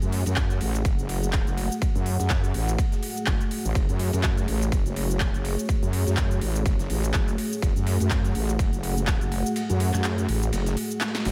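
Bass house with a gritty, aggressive swing, cut from a longer track, where a heavy, saturated sawtooth wobble bass sits up front with overdrive and sidechain pumping beneath a moody, detuned analog pad and a deep ambient pad with built-in reverb in the background, while a punchy, tape-toned big-room dance kit of crisp hats, snare, claps and shaker is backed by a faint, overdriven sampler-style soul kit of ride and snare, and an up-front electronic kick enters at 0.4 seconds and drops out at 9.6 seconds before a drum fill at 11.0 seconds.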